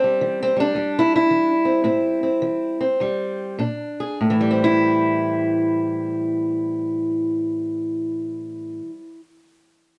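Mournful and smoky, this short cut from a longer acoustic country blues in A minor features a solo fingerpicked steel-string parlour guitar, dark, boxy and up front in light reverb, swinging in 4/4 at 95-112 BPM as it slows over the opening 4.2 seconds, holds a stop through 3.6 seconds, and moves from Am7 to Bb7 and back to Am7.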